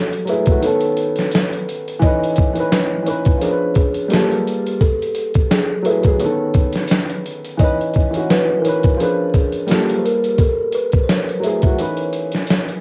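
At 86 BPM in 4/4 with a lazy swing on the sixteenths, a gritty sampler-style kit of thumpy kick, fat snare and hi-hat sits up front in this reflective, nostalgic lo-fi hip hop excerpt in C# minor, its 12-bit crunch and large-room re-recording giving it a compressed, dusty punch. A woody upright piano, smooth and vintage, comps through lush ninth chords such as F#m9, B9 and C#m9 from 0.3 seconds, while a hollow, ringing thumb-plucked kalimba carries the melody from the very start, both softened by a low-pass filter. Cassette tape saturation, vinyl crackle and a snug booth ambience wrap the whole home-recorded sound in faded warmth.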